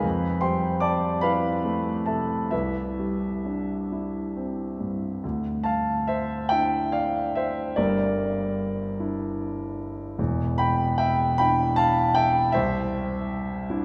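Mysterious and nocturnal, this short cut from a longer impressionist classical solo piano piece drifts in rubato 6/8 at 42-56 BPM in D dorian, its concert grand sounding warm, open and up front, with deep bass and long sustain reaching from E1 to D6, wrapped in a wet church reverb as the harmony moves from Fmaj9 and Cadd9 into a second passage at 5.2 seconds through Dm9, Gm6 and Em7 before settling on C.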